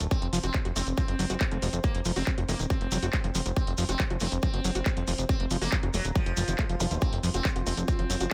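Psychedelic trance excerpt at 139 BPM in a driving, hypnotic 4/4, where a punchy, up-front electronic kick and a fat, detuned analog bass with tube saturation anchor metallic hi-hats, handclaps and a grainy shekere, while a buzzing, shimmering sitar with phaser, sidechain pumping and tape echo plays over a squelchy, distorted acid riff in the background, a swell and zap arrives at 6.4 seconds, and a pulsing gated chord texture enters at 7.0 seconds, all in a dry mix with little reverb.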